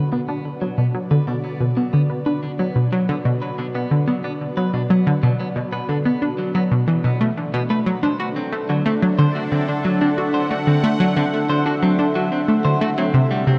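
Drenched in a vast, echoing cathedral reverb, this cosmic, expansive piece of sequencer-driven space music moves at 91 BPM in a straight 4/4, shifting from B minor to D7 at 7.9 s. Up front, a round, detuned analog pluck plays a riff with chorus, delay, vintage 12-bit sampler grit and shimmer reverb, while a full-bodied, evolving resonant pad holds sustained chords through chorus and shimmer reverb. A clean, picked electric guitar adds compressed arpeggios with delay, and both guitar and pad fade in across the full 13.6 s of this cut from a longer piece.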